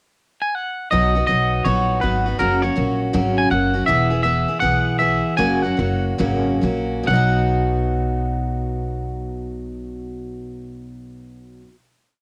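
A swung country two-beat in 4/4 at 130-163 BPM carries this short, sunny and nostalgic piece in B major, with a picked dreadnought acoustic strumming full-bodied open chords and a woody, thumpy upright bass playing root-and-fifth lines with walk-ups from 0.9 s. A bright, twangy electric guitar with tape echo opens with a pickup at 0.4 s, then takes a clean solo of answering blues licks over B, F#, E and F# that slows down from 3.9 s before the band settles on a final B chord at 7.1 s. The cassette home recording has a light reverb and keeps both guitars up front.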